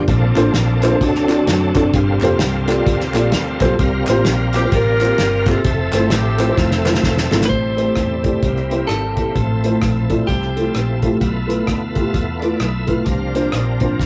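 A swung 4/4 groove from a soul drum kit with a tight kick, a drum fill at 6.6 seconds, a punchy foam-muted electric bass and crisp background handclaps drives this reverent, hopeful uptempo gospel cut from a longer piece, where a dark, boxy grand piano comps alongside a shouting tonewheel organ's sustained chords with slow rotary speaker, overdrive and chorus vibrato, while a bright jazz-style saxophone section carries the melody until a clean, compressed electric guitar takes over at 7.5 seconds, all in a rough rehearsal-room recording with moderate studio ambience.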